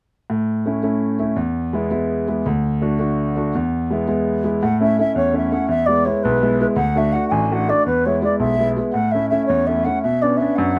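Dry and closely miked, this cheerful, lively Celtic folk excerpt in a straight 6/8 opens with a clear concert grand piano, up front with deep bass and long sustain, laying down the accompaniment from 0.3 seconds. At 4.6 seconds an airy, woody baroque flute enters with the melody, sounding distant yet expressive, its tongued notes carrying vibrato. The pair play together until the cut at 10.8 seconds, with the harmony turning to a Bmadd9 chord at 10.0 seconds.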